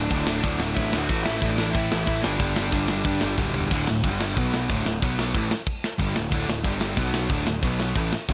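A dry punk rock excerpt with little reverb opens this energetic, rowdy burst at 184 BPM in straight 4/4, in D major. A dark, high-gain lead guitar carries a short melody from the start until 3.3 seconds, over three layered rhythm guitars playing a riff throughout: a bright, double-tracked and compressed distorted guitar sitting very quiet, a warm overdriven guitar in the background, and a sludgy, dark distorted guitar also kept very quiet. A bright, growly fuzz bass, picked and overdriven, drives the low end, while a tight acoustic drum kit with a medium-tuned snare, tight kick, crash and toms sits up front in a studio room. A drum fill from 3.4 to 3.7 seconds launches the second section, where the power chords shift rapidly among D5, G5 and B5 before landing on A5 as the clip is cut off.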